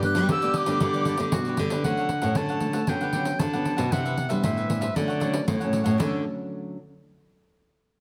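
A bright, reedy jazz flute opens this short cut from a longer samba and choro piece, singing a sunny, playful melody in its upper register with vibrato and a soft, airy attack before it drops out at 1.6 seconds. Beneath it, a breathy clarinet with light vibrato carries a clear second line in a jazz style, while a crisp, picked cavaquinho adds bright sparkle. Two nylon-string guitars fill out the lower end: one fingerpicked in a classical manner with fresh strings and a warm, up-front presence, the other thumb-plucking a small bass line. A jingly pandeiro played with soft hands sits close and forward, keeping the straight 4/4 groove light and lively. The harmony moves from G through lush Dmaj7, Gmaj9#11/D and Cmaj9 colours, and most parts stop around 6.2 seconds, leaving the fingerpicked guitar to ring on until 6.8 seconds in a large studio with moderate reverb and close, detailed microphones.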